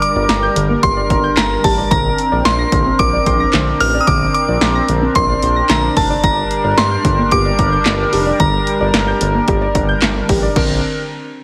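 Upbeat and nostalgic, this synth-pop excerpt moves at 111 BPM in Bb major, with chords shifting between Gm and Bbadd9. A glassy FM synth bell carries the high melody with chorus and slapback echo over a shimmering pulse-width pad, while a soft, round pluck with its own chorus and echo spins arpeggios from about 0.2 s. Underneath sit a smooth gliding synth bass and a punchy analog drum machine up front with kick, snare, handclaps, hi-hat and crash, all set in a moderate stage reverb with a heavily compressed radio sound.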